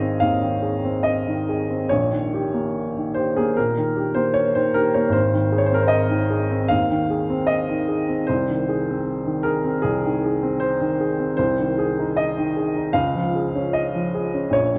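Unhurried rubato pulls the 4/4 pulse at around 76 BPM into uneven, breathing beats in this lyrical, romantic character piece for solo piano in Ab major. A baby grand with an open, up-front tone and long sustain carries the whole 14.8-second passage, ranging from Ab1 to F5 and moving from Ab through Eb7/Bb and Ab/C before settling toward Db. Concert hall reverb of moderate depth and a dark, warm production give the fragment, which is cut from a longer piece, a soft glow.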